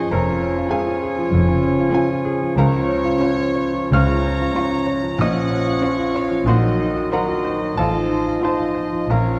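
Rubato in 4/4, this passionate, tragic excerpt from a romantic classical movement puts a clear, up-front baby grand piano on the melody alongside a distant, floating violin section, while clarinet, solo oboe, pure straight-toned flute and a dark, intimate second violin section weave second lines over a mellow bassoon and hushed violas, tight dark French horns hold sustained chords, close cellos and double basses anchor the bass, and timpani sound in the background from 5.2 to 6.1 seconds, all in a moderately reverberant space.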